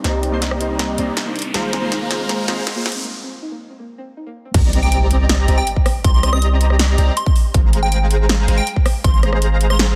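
Lush and bittersweet, this future bass passage, cut from a longer piece, moves at 160 BPM in a half-time 4/4 feel in C minor, cycling between Cm9 and Ab69 chords. It opens with a build-up in which glassy digital keys, an ethereal pad sitting in the background and a soft, round pluck playing arpeggios all pump against the sidechain, while a riser climbs from 0.7 seconds, filter sweeps move across the synths and a drum fill rolls across a big-room kit with a punchy snare and metallic hats. The keys, pad and pluck each drop out in turn, and a short break gives way to the drop at 4.5 seconds, marked by an impact and a punchy, layered electronic kick placed up front. Throughout, a fat, detuned polysynth carries the riff with chorus and a cassette-tape tint, and a deep, mellow 808-style bass holds long sine notes up front in the mix. From 4.8 seconds a catchy, bright unison lead takes the melody in a high register, colored by phaser and dub echo. 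The dense, heavily limited master keeps only a light reverb around the parts.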